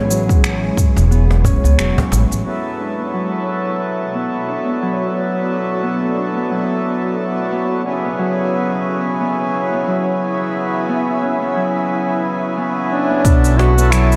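A growly, up-front upright bass with woody, pizzicato tone opens this hypnotic, meditative organic downtempo excerpt in 4/4. It pumps under sidechain alongside a deep, overdriven electronic kick, a tape-warm kit of finger snaps, crisp hats, shaker and low-passed toms, and a woody cajon with faint snares, all riding a 16th-note swing. At 2.4 s the bass and beat fall away as a reedy, nasal, breathing harmonium takes over the accompaniment, drifting through Bm7 and C#m7 with its own delay, filtering and sidechain pumping. Throughout, a mellow Celtic harp rings out thumb-plucked arpeggios roughened by vintage 12-bit grit, low-pass filtering and delay, with a filter sweep running across the long middle stretch. Alongside it, a cloudy, detuned granular pad sustains blurred chords with a slow attack and long release. A folk-style duduk with vibrato and scooped notes enters at 12.9 s, and at 13.2 s the bass and drums return, all set in light reverb and a small-room ambience.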